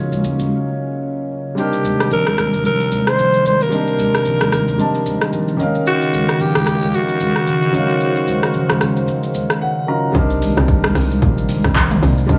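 Amapiano at 112 BPM with a swung sixteenth-note feel, this hypnotic, soulful excerpt moves between Ebm7 and Cm7 chords over a boxy, long-sustaining grand piano, a detuned sawtooth pad with chorus and sidechain pumping, an overdriven deep house kit with a punchy kick and metallic hats, and distant, high-tuned congas. After a short break, a breathy, raspy alto saxophone with tape echo carries the melody up front from 1.6 to 9.6 seconds, and a piano fill at 9.3 seconds leads into a tight, percussive FM log drum bass that enters at 10.1 seconds, all set in a small-room ambience with light reverb.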